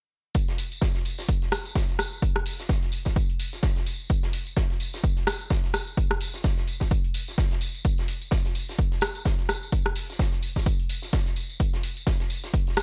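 A dry, transformer-saturated mix opens this soulful, bittersweet piano house fragment. An up-front, punchy layered electronic kick, a tape-warm analog drum machine's hi-hat and rim click heard through a small room, and a close acoustic tambourine with maracas and group handclaps enter at 0.3 seconds. A distant, roomy indie kit with a fat snare and filtered hats joins at 0.4 seconds, and all swing together on the sixteenths. The kick drops out at 12.6 seconds while the rest run to the cut at 12.8 seconds.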